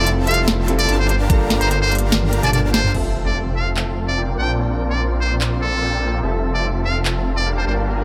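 A muted trumpet with a buzzy, brilliant tone leads this lush, playful future bass excerpt, singing up front with light vibrato and scooped notes from the start until 7.7 seconds, its line carrying a dub echo and sidechain pumping. At 146 BPM in a half-time 4/4 feel in F major, it rides over huge detuned supersaw chords through a low-pass filter and a thick, saturated saw bass with chorus, all pumping against the beat. An intimate grand piano with audible action noise sits in the background, while a punchy unison pluck adds bright arpeggios only until 2.9 seconds. Overdriven trap drums bring a sharp snare, crisp hats, handclaps, toms and crash, and a knocking electronic kick appears briefly; the kick drops out for a drum fill before the drop gives way to a new section at 2.9 seconds. There, a very quiet impact and riser enter as the chords move from Fmaj7 to Bbmaj9 and back to Fmaj7 under light reverb.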